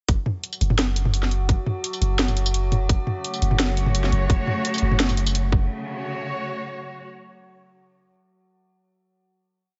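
Heavy and dark, this short half-time drum and bass piece at 171 BPM in F# minor opens at 0.1 seconds on a drop built from an overdriven, hard-clipped electronic kick, a sparse, up-front kit with a cracking snare, closed hat, tambourine and low tom, and deep, long 808-style bass notes on F#1, joined at 0.6 seconds by an eerie, metallic FM drone with chorus and reverb holding a high note, before a lush bowed cello section with vibrato and 12-bit sampler grit pumps through slowly shifting chords from 2.9 seconds and carries the final chord alone after the drop ends at 5.7 seconds, all in a dry, dark-toned mix.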